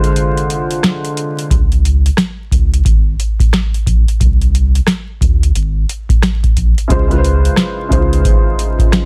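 Boom-bap hip-hop excerpt with a reflective, gritty mood and a swung groove, built on a booming, dry analog drum machine with a deep kick, tonal snare, rim clicks and metallic hats that runs throughout, while a dark, woody, slightly detuned upright piano with audible action noise and plate reverb opens the break and returns at 6.9 seconds, a soft, round dub sub bass holds the low end from 1.5 to 8.5 seconds, and the dense, heavily limited master carries a layer of vinyl crackle.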